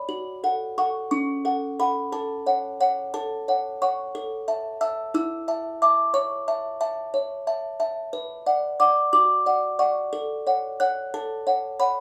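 Wistful and fragile, this classical lullaby is played on a lone music box, heard in a short cut from a longer piece. It moves at 60 beats per minute in 6/8, with a rubato feel that lets the time breathe. The large box sits up front, its delicate, tinkling plucked tones ranging from C#4 up to F#6 in F# minor. The harmony drifts from F# minor through A major and B minor before settling back on F# minor over A. A light reverb and the ambience of a small room frame the solo, giving the close, intimate playing a soft halo.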